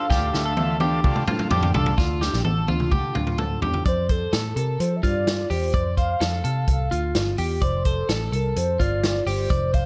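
Jangly indie pop at 128 BPM in F major, this nostalgic, breezy snippet from a longer piece rides a punchy, foam-muted vintage picked electric bass and an up-front vintage drum kit whose rolled-off top and fills run through the opening. A bright, compressed twelve-string electric guitar spins arpeggios through an analog delay the whole way, while a buzzy, overdriven combo organ with light vibrato drops out at 1.9 seconds and a fingerpicked steel-string acoustic guitar, complete with finger squeak, sits in the background until 3.9 seconds. Its velvety sawtooth-and-triangle tone treated with chorus, the synth lead takes the melody in a brief opening phrase and returns at 3.9 seconds as the harmony moves from Dm to F6, all inside a light reverb.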